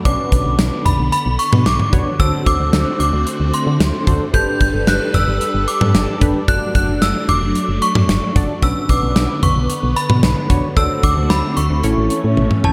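A straight 4/4 pulse at 112 BPM drives this wistful, nostalgic synth-pop clip in D major, anchored by an up-front gated 80s drum kit with a punchy kick, medium-tuned snare, hi-hat and toms, capped by a drum fill at 12.4 seconds. A solid FM bass sits round and dark beneath a funky sawtooth polysynth comp with a filter pluck, while a swirling vintage string machine holds sustained chords through ensemble chorus and phaser, and an inharmonic synth chime rings out the high melody with chorus and delay. The chords move from Bmadd9 through D7, Gadd9 and D/F# before turning to A, set in a dreamy mix soaked in plate reverb.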